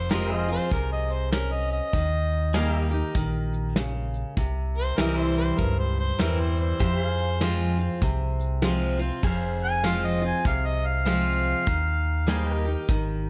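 A mellow, smooth-topped harmonica leads this lonesome, brooding honky-tonk and classic country passage, carrying a solo line up front across its roughly 13 seconds, which are cut from a longer piece. Beneath it, a bright, full-bodied picked steel-string acoustic guitar supplies accompaniment, with a touch of finger squeak, while a round, amped fingered electric bass anchors the low end. A twangy, compressed pedal steel guitar, played with fingerpicks and slide, adds sustained chords with volume swells further back in the mix from 0.1 seconds. A soft brush drum kit with dark cymbals, a punchy kick and a rolled-off top keeps a swung 4/4 at 99 BPM in F minor, moving through Fm, Eb and C. The whole is set in a moderate large-studio reverb that gives the band a sense of space, with the two statements of the same section turning over at 9.2 seconds.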